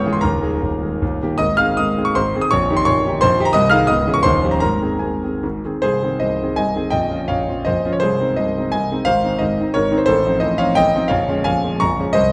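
A natural concert hall glow surrounds this recording, with a moderate reverb of about 1.8 s framing a solo concert grand piano that sits up front and sounds clear. This is a short classical passage, cut from a longer piece: a romantic dance in 3/4 with dotted rhythms, graceful and proud in mood. The tempo moves between 143 and 192 BPM with a flexible rubato feel, and the music is in Ab major, tuned to A4 = 441 Hz. The piano spans from a deep bass Bb0 up to F6, and its notes have a short sustain that keeps the dance figures crisp. The opening phrase settles from Ebsus4 through Eb7/Bb and Eb13 onto Ab. A new phrase begins at 5.8 s, passing through Bbm and F7/A before arriving at Bbm7 at 11.1 s, where it remains until the excerpt ends at 12.3 s.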